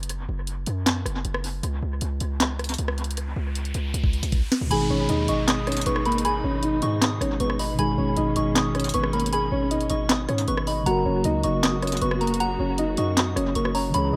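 A knocking, tape-warm trap kit and a punchy, sine-heavy 808 bass drive this eerie, menacing half-time hip hop excerpt, with a riser building through a drum fill before a soft round pluck, a pure FM synth bell, a mellow tine electric piano and lush bowed strings in the background enter at 4.7 seconds, the kit, pluck, bell and electric piano all bathed in dub echo.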